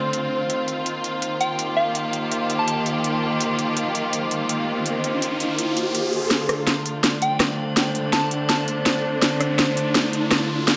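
A half-time groove at 165 BPM, with crisp low-passed hats, rim clicks and a cracking snare, drives this tense, spacious drum and bass excerpt in D phrygian: up-front bowed strings sustain rich vibrato chords over an eerie metallic drone treated with chorus, phaser and built-in reverb, a soft, warbling FM bell melody with chorus and delay drifts in at 1.4 seconds, and a background riser from 4.2 seconds leads into a drum fill and build-up at 6.3 seconds as the harmony moves from Ebadd9 to Dm, within a lush hall reverb.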